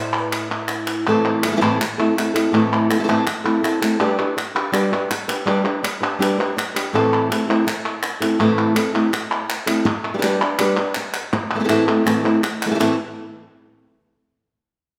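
Passionate and fiery, this short cut from a longer flamenco piece moves at 164 BPM in a straight 4/4, centred on A minor. A fingerpicked acoustic flamenco guitar carries the melody from the start, ranging from A2 up to E5 and sitting up front. Crisp palmas hand claps join at 0.1 seconds, close and live in the room, keeping the pulse beside the guitar. After an opening A5, the harmony swings between Am and G, and both parts stop together at 12.9 seconds. A wet recital hall reverb with a 1.4-second decay wraps the performance in the resonance of a church or concert hall.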